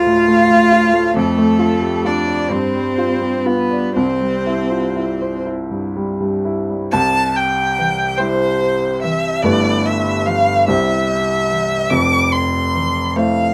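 Closely placed, detailed microphones and a light reverb give this short passage of a slow, romantic piano-trio movement an intimate, finely etched sound. The mood is serene and warm, in C major and 6/8 time, moving with a flexible rubato at roughly 40-49 dotted-quarter beats per minute and tuned to A4 = 439 Hz. A single violin carries the melody, singing between A4 and D6 with expressive vibrato and portamento, a rich, bowed voice that seems set slightly back in the room. Beneath it, a single cello traces a smooth, even second line between E3 and F4, sounding close and steady until it drops away at 13.1 seconds. A baby grand piano underpins both strings with an open, long-sustaining accompaniment that spans from F1 to D5 and sits up front in the balance. The harmony drifts from D minor colors through G toward C, and a second section starting at 6.9 seconds moves through a G13 chord back to C before settling on Fmaj7, as this fragment of a longer piece is cut off.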